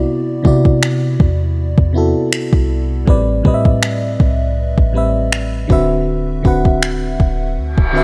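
Set in a digital ambience, this excerpt of tender, romantic contemporary R&B moves at 80 BPM in 4/4 with a light 16th-note swing. A lush, dreamy FM electric piano with a soft pad layer and chorus sits up front, carrying the chords Cmaj9#11, Am11 and D13 over a deep, boomy, mellow 808-style sine bass. A produced drum kit of finger snaps and a soft, overdriven kick enters at 0.4 s, and an electronic reverse cymbal rises at 7.7 s into the cut.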